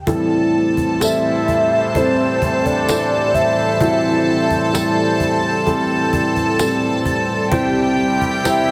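Heartfelt and hopeful, this slow pop ballad excerpt drifts through a dreamy mix soaked in the long tail of a cathedral reverb. From the opening, a felt-muted upright piano lays down mellow, boxy accompaniment with audible action noise and a touch of analog chorus. Alongside it, an evolving sawtooth pad holds bright sustained chords with a filter swell. Up front, a close studio violin section carries a pure, floating second line played sul tasto. A snappy cajon with snares, played with soft hands, keeps the pulse. At 1.0 s a round, dark synth lead with a sub octave and vibrato takes the melody through chorus, phaser and diffuse ambient delay, while a jingly tambourine sits in the background, and the harmony rests on Am7 before moving to C at 7.5 s.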